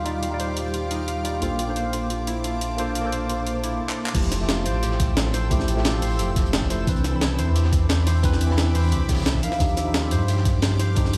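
A straight 4/4 groove at 176 BPM drives this lush, dreamy liquid drum and bass in F major, with a gritty, pitched-up breakbeat kit of snare, hi-hat, handclaps and crash entering at 0.1 seconds and a drum fill at 3.9 seconds leading into the drop at 4.1 seconds. There, a thumpy, compressed electronic kick arrives alongside a very quiet, dark, saturated second breakbeat kit with a high-tuned snare, while a deep, full sine sub bass with octave, present from the very start, sits up front. Above them, a worn, slightly out-of-tune tine electric piano with tape echo, ringing fingerpicked concert harp arpeggios through digital delay, and a shimmering, ethereal granular pad with chorus, phaser and sidechain pumping move through maj9 chords, all in a stone room's reverb.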